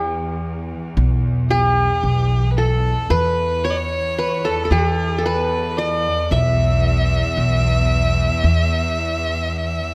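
A fingerpicked qanun leads up front with a bright, plucked edge, tracing a melody in maqam rast on E that spans from the note between G and G# up to E5. Beneath it, a growly, woody pizzicato upright bass anchors the stately 10/8 pulse at 112 BPM while an earthy bowed cello section holds a low E drone with light vibrato. A biting, intense solo violin joins with a second line at 1.5 seconds, all set in a moderate recital-hall reverb in this brief passage cut from a longer piece.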